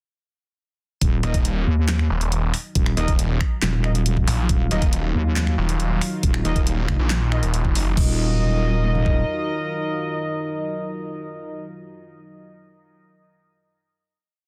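A saturated, square-wave wobble bass leads this heavy, menacing half-time wobble dubstep piece from 1.0 seconds over an overdriven knocking kick with toms and a huge snare with bright hats, claps, snaps and crash, joined at 1.2 seconds by a growling, detuned sawtooth bass and sparse, distant brass chord stabs trailing dub echo, while a moody sub-octave ambient pad and a lush, warbling unison pad pump beneath the dense, heavily limited drop before sustaining into a final chord from 8.0 seconds.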